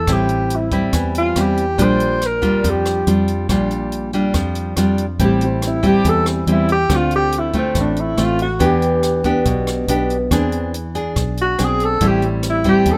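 Melancholic and smooth, this bossa nova excerpt at 141 BPM in straight 4/4 features a breathy, mellow alto saxophone soloing up front with subtone and scooped notes over fingerpicked nylon-string guitar, a round, foam-muted fingered electric bass, and a dry, compact cocktail drum kit of hi-hat, punchy kick and rim click entering at 0.1 seconds, all in light reverb as the chords move from Am7 through Bb6, Dm7, Em7 and E7b13 back to Am7.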